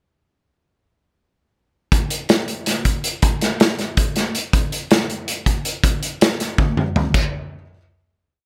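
A loose, acoustic indie drum kit carries this short, complete rock piece on its own, sitting up front in a small, pumping room with light reverb. Crash cymbal, hi-hat, kick drum, snare drum and toms work through an intricate, playful groove in 7/8 with a straight feel. The cymbals are dark, the snare medium-tuned and the kick tight, giving the kit a compact, punchy character. The drums enter at 1.9 seconds and ride the odd-metre pattern until a fill at 6.6 seconds. A final hit lands at 7.1 seconds and rings out to close the piece.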